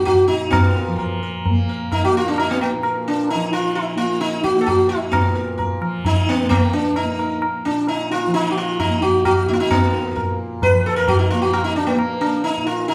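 Meditative and devotional, this brief fragment of Hindustani classical music in a five-beat cycle sets a bright, buzzing sitar up front with shimmering sympathetic strings over the softly plucked, warm drone of a tanpura and a high-tuned, close and dry tabla from 0.1 seconds, all resonating in the lingering reverb of a recital hall.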